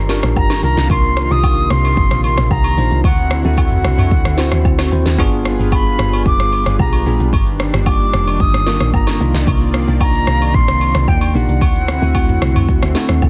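Amapiano at 112 BPM in C minor, this short excerpt carries a late-night, deep mood over a straight 4/4 groove. A deep log drum bass sits heavy in the mix, round and percussive with a fast attack, a dark decay and a noise layer. The electronic afro-pop drum kit arrives at 0.1 s and sits up front, with a deep kick, a sharp snare given soft clipping, smooth hats, rim clicks, shaker and toms, all carrying a tape-like glow from re-recording in a small room. Agogo bells and woodblock, along with a tube shaker and group handclaps, add acoustic colour from the background. A bell-like tine electric piano plays bright, clean accompaniment while a sawtooth analog pad holds soft-attack chords with chorus and sidechain pumping, moving through Ebmaj7, Cm11, D9 and G7b9. On top, a concert flute sings a pure, expressive melody with vibrato and delay, all within a dense, heavily limited master that has little reverb.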